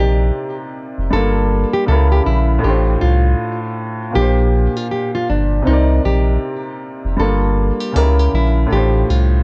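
A dreamy, mellow hip hop excerpt opens with all three parts together: a fingerpicked nylon-string guitar carrying the melody between D4 and A4, a clear upright piano in accompaniment, and a round sine sub bass underneath. The tempo sits at 79 BPM in 4/4, with a 61% swing on the sixteenths giving it a relaxed, loping feel, and the tuning is set to A4 = 444 Hz. The guitar has a dark, full-bodied classical tone, softened by a low-pass filter and trailed by tape echo. The woody, natural piano rings with long sustain up front, its range spanning A2 to D5 and its sound dulled by low-pass filtering and a cassette-tape character. The deep sub bass moves between F1 and C#2 with a fast attack and sustained notes, sitting prominently in the mix. Light studio reverb and a cassette-tape sheen colour the whole recording, while the harmony drifts through Cm7, Gm9, C#dim7, Dm7/A and Bb69 before cycling back around until the clip ends at 9.4 seconds.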